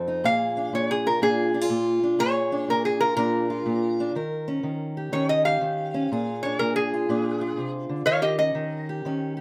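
A light reverb frames this short cut from a longer acoustic country blues, with both guitars sitting up front in a soulful, swaggering mood. At 123 BPM in 4/4 with a swung eighth-note feel, a fingerpicked steel-string parlour guitar carries the accompaniment from the very start, its fresh strings giving a warm yet boxy tone. Just after, at 0.3 seconds, a lap resonator guitar played with slide and fingerpicks takes the melody, its metallic, nasal voice riding in the upper register. The harmony moves through Bb7 and Eb7 in Bb mixolydian, settling back on Eb7 near the close. The resonator drops out at 8.9 seconds, leaving the acoustic guitar to ring on until 9.4 seconds.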